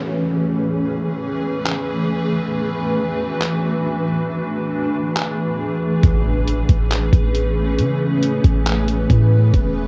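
This home cassette recording sounds dry and lo-fi, a hazy, ethereal slice of atmospheric cloud-rap cut from a longer piece and moving with a slow half-time hip hop feel. A granular cloud pad sits up front the whole way, holding blurred, detuned chords that shift from Amaj9 to E9sus4 and back. The pad has a slow attack, long release, a moving notch, its own built-in reverb, sidechain pumping and a cassette tape tint. A very quiet electronic downlifter opens the track, and a compressed, pitched-down sampler-style kit of handclaps, hi-hat and a thumpy, muffled kick comes in at 1.7 seconds. The kick drops out at 4.3 seconds, then returns at 6.0 seconds alongside a faint impact and a deep, boomy 808-style bass, a sine tone with a noise layer, fast attack and decaying tail.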